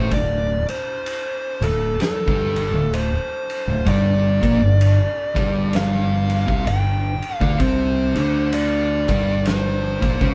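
Brooding and hypnotic, this stoner and doom metal excerpt crawls at 64 BPM in 4/4 with a swung eighth-note feel, moving from D5 to G5 at 3.9 seconds. A pair of thick, dark fuzz guitars grind out the riff in the background beneath a compressed, distorted fuzz lead melody, while a growling fingered electric bass, bright and punchy with overdrive and tube saturation, anchors the low end. An oversized low-tuned acoustic drum kit enters at 0.1 seconds with a boomy kick, fat snare and dark ride cymbal, its gritty, saturated sound pumping in a big room, and the band plays live together in a small room with moderate reverb.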